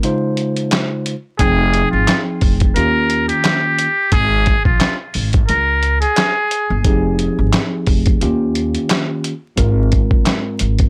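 The recording is dry and gritty, with a hardware edge and a bed of vinyl crackle, in a moody boom-bap hip-hop excerpt with a lightly swung groove. The sampler-style drum kit sits up front, compressed and pitched down, with a thumpy kick, a medium-tuned snare, hi-hat and handclaps, re-recorded in a small room. A mellow tine electric piano plays through its built-in speakers, colored by cassette tape and filtering, and carries chords such as Dbmaj7, Fm7, Eb7 and Ab69. At 1.4 seconds a pizzicato upright bass enters, woody and dark with gut strings, and a trumpet with a metal mute takes the melody. The trumpet is buzzy, breathy and whispered, an intimate jazz-style solo treated with filtering and analog delay, and it stops at 6.8 seconds while the bass, piano and drums carry on.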